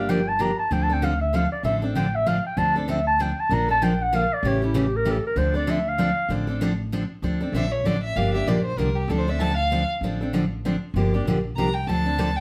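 Swinging in three, this bittersweet acoustic string-swing fragment opens with a mellow, vintage clarinet, up front with subtone and vibrato, over a bright, full-bodied picked steel-string guitar and a woody, thumpy pizzicato upright bass; the clarinet stops at 6.3 seconds, and a bowed violin, expressive with portamento and a soft attack, takes the lead from 7.5 seconds, the group playing live together in one room with moderate studio reverb.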